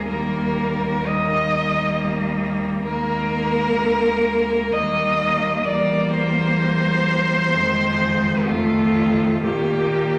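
Serene and lyrical, this classical passage for four cellos moves at a slow 64 BPM in 3/4, with an unhurried rubato that gives the beats an uneven, breathing quality in Eb major. Each player bows with vibrato and a rich, focused tone: the melody cello sits up front yet sounds distant as it sings in its upper range, over a second line, an inner accompaniment and a low bass line. A wet recital-hall reverb surrounds the ensemble as the harmony drifts from Eb through C7/E and Fm7 to settle on Eb/Bb, in this short extract from a longer piece.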